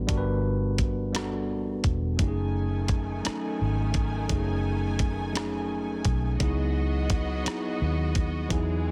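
Slow R&B in six-eight at 57 BPM, this short cut from a longer piece in F# dorian carries a late-night, yearning mood. A worn, slightly out-of-tune tine electric piano sits up front with light overdrive, heard through built-in speakers, laying down chords from Gmaj9 before moving to F#m69 at 2.2 seconds and on to C#m11. Beneath it, a dark, round, foam-muted fingered electric bass holds the low end, while a dusty, sampler-style drum kit of hi-hat, thumpy kick and rim click sounds gritty and compressed, with soft clipping on the snare. At 2.2 seconds a distant, lush string section enters with bowed, sustained chords full of vibrato, adding a focused ensemble sheen behind the keys and drums. The room is nearly dry, and the master is dense and heavily limited in a modern way.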